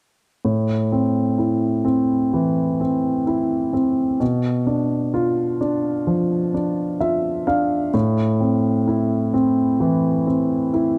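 Intimate and melancholic, this short folk passage unfolds at a slow 64 BPM in straight 4/4, set in A minor. A concert grand piano carries the whole piece from 0.4 to 11.0 seconds, playing an accompaniment part that spans from deep bass up into its upper register. Its tone is warm and natural, with long sustain, and it sits up front, where close, detailed microphones catch the audible noise of the instrument's action. The harmony moves from A minor to B diminished at 4.2 seconds before returning to A minor at 7.9 seconds. A light reverb gives the piano a touch of space, and the passage is cut from a longer piece.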